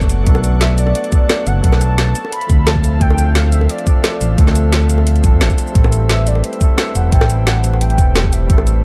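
A straight 4/4 groove at 175 BPM drives this rolling, melancholic excerpt of liquid drum and bass, built on a knocking, overdriven electronic kick and a layered garage kit whose woody snare, metallic hats and shaker carry the same grit and studio reverb. Tight, high-tuned bongos join at 0.3 seconds, sitting in the background. Up front, a dark, gliding synth bass with portamento holds down the low end beneath a barky tine electric piano, played clean through a combo amp with tape echo. An airy, breathy pad hangs behind everything with chorus and sidechain pumping, sustaining chords that move from Bm7 to Dm7 and then Am7. From 0.6 seconds a velvety, detuned synth lead with vibrato and chorus sings the melody, its tape echo adding to a light-reverb, echo-heavy mix that shows some lossy compression artefacts.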